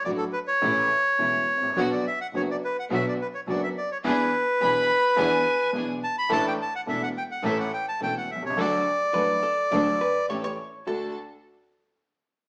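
A reedy, bright bandoneon carries the melody up front in this nostalgic, elegant rubato tango fragment, over a clear concert grand piano with audible action noise and deep bass, a smooth bowed double bass and a lush, distant string section adding stabs in the background, while a warm bowed violin with vibrato offers a brief second line at 4.6 seconds and a dark, clean hollow-body electric archtop guitar joins at 9.1 seconds, the band heard playing live in a wet stone room with a small-speaker sound.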